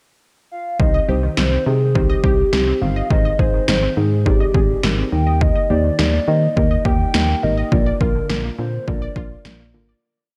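A hollow, woody clarinet-like synth lead opens this short, upbeat yet wistful synth-pop piece with a warbling, vibrato-laced motif through chorus and tape echo, joined at 0.8 s by muted, felt-like keys in close-voiced eighth-note chords, a detuned analog pluck patterning sixteenth-note arpeggios in the background, a round, pulsing FM bass with slides, and a straight 80s drum-machine beat of punchy kick and gated snare up front, moving through Cm, Ab, Eb and Bb in a dark, lightly reverberant production that fades out from 7.7 s.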